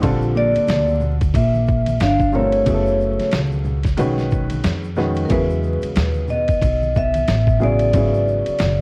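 A swung 16th-note groove at 91 BPM, driven by a gritty, compressed sampler-style drum kit with a thumpy kick, pizzicato upright bass with a woody tone, and vintage tube shaker and congas in the background, anchors this cool, mellow jazz-hop excerpt, where a warm, up-front upright piano with short sustain and a dark, clean, fingered electric guitar, both with cassette-tape colouring, support a ringing, airy vibraphone melody with slow motor vibrato that enters with the guitar at 0.4 seconds, set in a small room with light reverb and the vinyl crackle of a home cassette recording.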